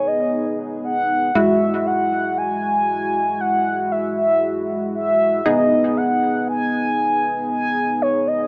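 A straight 4/4 pulse at 117 BPM drives this short pop clip in G# minor, cut from a longer piece and carrying a cool, driving mood. A funky polysynth comp sits up front in the middle register, its detuned sawtooth and triangle tones reinforced by a sub octave, with a punchy filter pluck on a fast attack that still sustains. Over it, a mellow horn-like synth lead carries the melody between C#5 and G#5, round and soft in attack, with a filter sweep and vibrato giving it a singing quality. Both parts run the full 8.5 seconds and are treated with chorus and analog delay, making for an echo-heavy mix set in moderate spring reverb. The harmony moves from G#m to Eadd9 at 1.4 seconds and returns to G#m at 5.5 seconds.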